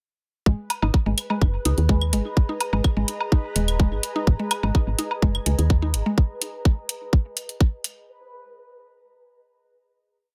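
The up-front, tight four-on-the-floor electronic kick anchors this sparse, clinical minimal techno piece in G# minor at 126 BPM, joined by metallic programmed hats, overdriven woodblock and claves clicking in cross rhythm, a woody, dark FM bass riff, a mallet-like pluck whose 7-step loop drifts against the bar through chorus and tape echo, a bubbling stepped-filter texture holding a high note, and an ethereal, phased pad fading in from 0.5 s with slowly shifting chords, the bass, pluck, texture and pad all pumping under the kick in light reverb.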